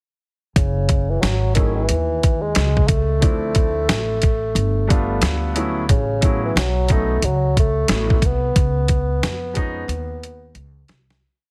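A gritty, pitched-down boom-bap drum kit with a thumpy kick and backbeat snare sits up front in this cool, mellow jazz-hop piece, carrying a woody pizzicato upright bass walking with chromatic approach notes, free rootless comping from an open-sounding upright piano entering at 1.5 seconds, and a dark, smooth-topped bassoon shaping a classical-style motif melody with slapback echo, heard through a heavily compressed radio sound before a fade-out from 8.6 seconds and a closing drum fill at 9.9 seconds.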